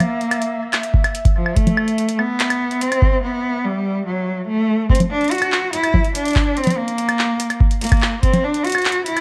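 Worn, warbly cassette tape and a light digital ambience wrap this intricate, glitchy IDM excerpt, cut from a longer piece and running at 144 BPM in a straight 4/4. Up front, a rich, focused bowed cello with vibrato carries the melody through a tape echo, while a booming analog drum machine clatters with congas, handclaps, metallic hi-hats and woodblock, and a deep electronic kick arrives at 0.9 s. In the background, a bubbling, resonant sawtooth texture with random filter steps, chorus and reverb lingers only until 3.2 s, when a break begins, and the music moves into a new section at 4.9 s.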